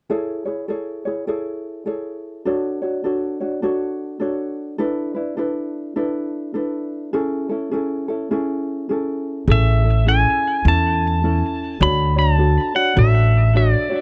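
A dry, close 1970s-style studio sound with light reverb frames this sunny, relaxed Hawaiian excerpt at 102 BPM in A major, where a mellow, thumb-plucked ukulele plays alone through Amaj7, Dmaj7 and E7sus4 before a clean electric pedal steel guitar with fingerpicks, slide, volume swells and tape echo takes the melody up front at 9.5 seconds, joined there by a woody, dark pizzicato upright bass.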